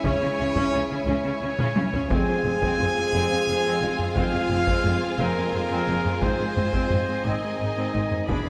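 Set in a moderate scoring-stage reverb, this heroic, epic orchestral film-score excerpt in 6/8 places up-front trumpet stabs and close, dry hard-stick taiko drums, which play a fill at 1.6 seconds, over a lush bowed backdrop of a distant violin melody, a soft-attack second violin line, expressive violas, sustained full-string chords, a focused cello bass, portamento-touched double basses, warm French horn chords and very quiet trombones.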